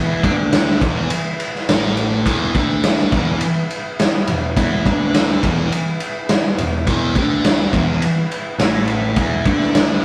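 A gritty, punchy garage drum kit sits up front beside a thick, double-tracked fuzz guitar riff coloured by phaser, while a round, overdriven picked bass and a full tonewheel organ holding sustained chords through a slow rotary speaker and chorus vibrato stay in the background of this kaleidoscopic, trippy psychedelic rock excerpt, caught in a rough rehearsal room with moderate reverb over a steady E chord.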